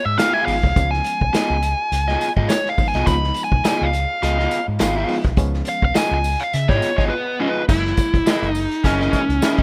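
A dark, smooth, overdriven lead guitar opens this playful funk cut at 104 BPM, soloing up front in Db mixolydian over a Db9 groove with a swung sixteenth feel, joined almost at once by a round, amped fingered bass, a compressed, picked overdriven rhythm guitar soaked in spring reverb, and a vintage drum kit with a punchy kick, dark cymbals and a pumping small-room sound. A jingly tambourine and a barky, reedy electric piano throwing lightly overdriven stabs sit in the background. After a break at 7.1 seconds, the harmony shifts to Gb13 at 7.7 seconds, all captured in a rough home-demo mix.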